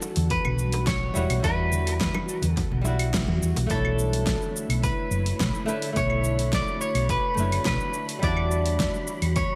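A clean electric guitar carries the melody through lush chorus and digital delay over fingerpicked flamenco guitar, an ethereal detuned pad, a deep house kit with a fat overdriven snare, claves, hi-hat and shaker, and very quiet, close bongos and congas that drop out at 3.7 s, as a round, dark hollow-body bass sits up front with a punchy electronic kick in this warm, smooth sunset chillout excerpt at 106 BPM in B minor, moving from Em9 to Bm11 with a band accent at 3.1 s and a breathy wind-like noise texture drifting in at 4.4 s, all under a moderate plate reverb and bright 1980s-style digital production.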